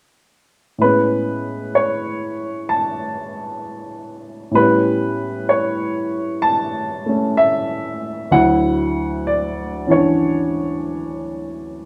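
A slow swing in four, with lazily lilting eighth notes, sets an unhurried pace for this relaxed, sophisticated solo jazz fragment cut from a longer piece. A dark baby grand piano carries everything alone from 0.8 s to 11.9 s, ranging from deep bass notes up into its upper register. Its tone is mellow and natural, placed up front so every voicing sounds close and intimate. The harmony drifts from Amaj9 to A9 at 4.6 s and settles on Dmaj9, lending the passage a lush, elegant colour. A moderate stone-room reverb surrounds the instrument, and the live, single-room capture gives the performance an unvarnished, in-the-moment feel.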